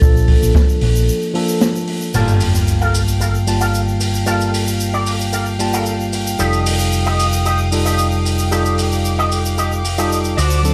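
A round, punchy fingered electric bass sits up front in this cosmic, sensual nu-disco excerpt at 113 BPM in G minor, joined by a worn, slightly out-of-tune tine electric piano with sidechain pumping and tape echo, a boomy kick drum that stops at 0.7 s, a dark, smooth open jazz drum kit with snare, hi-hat, crash cymbal and cabasa, a background egg shaker, and a ringing hard-mallet vibraphone melody that ends at 1.6 s, before a break gives way at 2.1 s to an impact with a background sub drop, distant bowed chamber strings with light vibrato and pumping, and a bright, twangy envelope-filtered guitar riff with ensemble chorus and tape echo over Gm9 and F9 chords.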